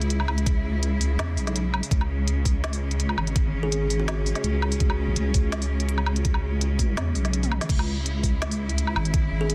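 An overdriven, knocking electronic kick sits up front in this half-time drum and bass excerpt, entering at 0.5 seconds over a produced kit of woody snare, smooth hats, crash, toms and woodblock, with a drum fill at 7.4 seconds. A deep, dark wobble bass with chorus and tube saturation carries the low end, while a bright, lush cello section holds sustained chords with sidechain pumping. The mood is spacious and cinematic, the dense, heavily limited mix has little reverb, and a plucked kalimba with digital delay rings briefly in the background from 3.6 seconds.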